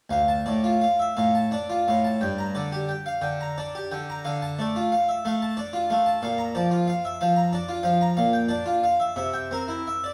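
A solo harpsichord, close-miked and up front with a full, plucked tone from two sets of strings in the French style, carries this solemn, flowing baroque-style suite movement in D minor. Set in a rubato 6/8 at about 56-62 BPM in dotted quarters, it spans from low D2 to Bb5 as the harmony moves from D minor through G minor and B-flat toward a C7 at 9.2 seconds. The dry instrument sits within a wet recital hall reverb, and this brief excerpt is cut from a longer piece.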